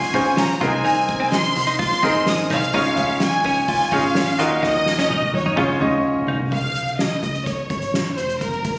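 This hopeful, anthemic slice of piano-driven pop opens with everything but the bass at once: a lush, up-front violin section carries the bowed melody with expressive vibrato, while a clear, polished concert grand supplies the accompaniment with deep lows and short sustain. A bright, compressed electric guitar, recorded direct and picked clean, repeats a small riff beneath them, and a soft-mallet drum kit adds a boomy kick, fat snare, toms and dark cymbals with a big-room feel. An overdriven, foam-muted electric bass joins almost immediately, its round, punchy tone sitting in the background. The harmony moves through major and minor chords at a steady, straight pulse, and a drum fill runs from 4.6 to 6.5 seconds. Around 6.5 seconds the piano and guitar drop away, leaving the strings, drums and bass to carry a new section. The whole ensemble sits in a moderate studio reverb, heard as if captured on a phone in the room, and the passage is cut from a longer piece.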